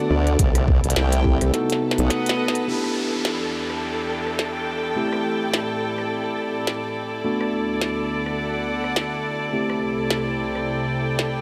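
A formant-sweep wobble bass with a sawtooth bite and chorus enters a moment into this funky, gritty glitch hop excerpt at 105 BPM in E minor, riding a drop alongside a thumpy, pitched-down overdriven kick that drops out by 1.4 seconds while a glitchy kit of clicky hats, rim clicks and a tiny snare rolls into a drum fill and a band accent at 2.5 seconds. Underneath, sounding from the very start, a warbling, detuned tape-like pad with 12-bit sampler grit, mellow tine electric piano stabs with digital delay, and an intimate sul tasto chamber string section all pump with the sidechain. From 2.7 seconds a filter sweeps across the nostalgic pad and an electronic downlifter passes through as the chords move from Em7 through Am7 and D6 to C6, all set in a lush hall reverb.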